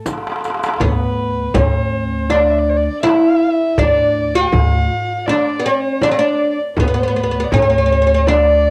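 A bright, woody fretless oud carries the melody up front in this longing, hypnotic Arabic maqam ensemble excerpt in D maqam rast at 80 BPM in straight 4/4, joined by a dark, intimate bowed violin second line with vibrato, both tinted by cassette tape, while a crisp metal-shell darbuka, a deep, hard-handed frame drum and a brief, dry riq open with a drum fill at 0.1 seconds before a growly pizzicato upright bass with transformer saturation enters at 0.8 seconds, the ensemble set in light reverb on a home cassette recording.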